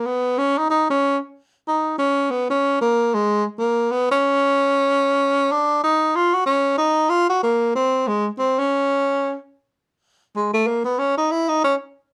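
A lilting jazz waltz in three with a swung eighth-note feel sets a swinging, warm mood in this short excerpt cut from a longer piece. A lone tenor saxophone carries everything up front, its breathy, whispered tone shaded with vibrato, soft attacks and scooped notes that give the playing an intimate quality. Light reverb surrounds the horn, which moves into a solo passage at 9.7 seconds before falling silent at 11.7 seconds.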